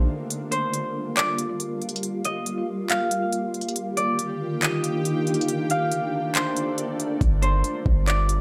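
A fingerpicked concert harp rings out a filtered, delayed melody over a shimmering, detuned ambient pad that pumps with chorus and reverb, opening this hazy, spacious cloud-rap fragment in G minor at 139 BPM in half-time, as handclaps and smooth hi-hats from an up-front R&B kit enter at 0.3 s with the soft kick held back until a deep, boomy 808 bass returns at 7.2 s beneath chords moving from Gm7 through Ebmaj7 and Bbmaj9 back to Gm7, inside a moderate digital room.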